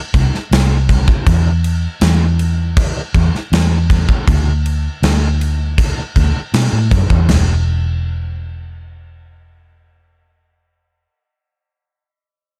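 A straight 4/4 pulse at 80 BPM drives this brooding, hazy fragment of shoegaze-tinged dream-pop rock, tuned slightly sharp to A4 = 444 Hz. A gated 80s drum kit with a punchy kick, medium-tuned snare, toms and crash sits up front with an airy, polished big-room sound until 7.5 s, while a round, foam-muted fingered electric bass with an amped, dark tone holds the low end from E1 to B2 and carries on alone through 11.1 s. The production is dry and shadowy, and the music shifts into a new section at 7.3 s before the piece is cut off.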